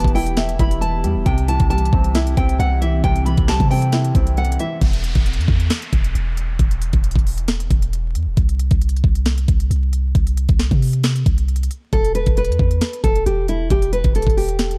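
Hard-hitting and eerie, this half-time trap hip hop excerpt opens with a filtered, fingerpicked nylon-string guitar melody with finger squeak and delay over a soft, felt-muted upright piano and a very quiet, glassy FM pad, all grounded by a deep, boomy 808-style bass and an overdriven trap kit of knocking kick, sharp snare and crisp hats up front; at 4.8 seconds the chords drop away as an electronic downlifter falls under the bass and drums, and the guitar returns at 11.9 seconds, all in a dry mix dusted with vinyl crackle.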